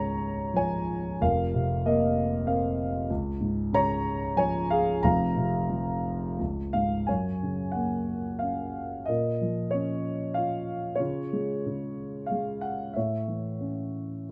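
Close, detailed microphones and a light reverb place a grand piano up front, its tone dark and mellow with a slightly boxy body. This is lyrical classical solo piano in a relaxed, hopeful mood, moving in a gentle three-beat metre with a flexible, rubato feel. The piano carries everything alone, ranging from deep bass notes up into the upper middle of the keyboard. The opening passage circles between a home chord and a suspended chord, and at 7.1 s the harmony shifts to a new centre, passing through minor and major colours before arriving on an A chord near 13.0 s. The recording is an excerpt cut from a longer piece, ending at 14.3 s.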